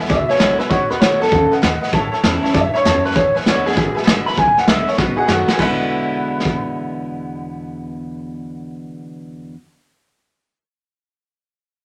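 Rollicking, retro rockabilly in E mixolydian, swinging along at 197 BPM through E7, B7 and A7 changes, in a short clip taken from a longer piece. A twangy, slightly broken-up electric guitar carries the melody from 0.1 seconds, over a full-bodied, woody picked acoustic guitar, a jangly tack piano sitting in the background, and a thumpy pizzicato upright bass. Up-front soft brush drums with a punchy kick play a fill from 5.0 to 5.6 seconds and drop out at 6.5 seconds, all inside a moderate studio reverb.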